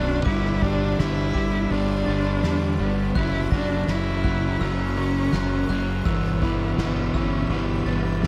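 Post-rock with a melancholic, cinematic mood, this short excerpt moves at 83 BPM in a straight 4/4, drifting through Gadd9, F# and Em/G. Up front, an overdriven semi-hollow guitar plays a picked, hollow-bodied riff, anchored by a growly fuzz bass that is punchy and bright with overdrive. A rich, bowed cello carries the melody with smooth vibrato and a slapback echo. Underneath, a very quiet electric guitar through a small old amp fingers lo-fi, slightly broken-up arpeggios, while a dark, bell-like glockenspiel with brass mallets rings out its own arpeggios high above with slapback echo. A shimmering, ethereal pad holds sustained chords in the background with an octave-up shimmer, chorus and its own reverb. From 0.3 seconds a soft-mallet drum kit joins in the background with a punchy kick, fat snare and dark ride cymbal, all set in light small-room ambience.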